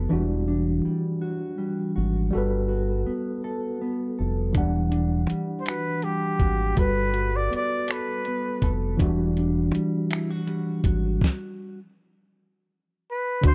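A slow, straight six-eight R&B groove, cut from a longer piece, rests on a deep, round fingered dub bass, a worn, slightly out-of-tune tine electric piano with light overdrive, and a dark, clean electric guitar second line washed in lush chorus. A dusty, gritty sampler-style soul kit of finger snaps, hi-hat, thumpy kick and fat snare joins at 4.5 s, while a clear vintage flugelhorn with vibrato sings a sultry, yearning solo melody from 5.6 to 8.7 s. The band stops at 11.2 s, and the horn returns briefly at 13.1 s, all captured in a dry, close 1970s-style studio sound.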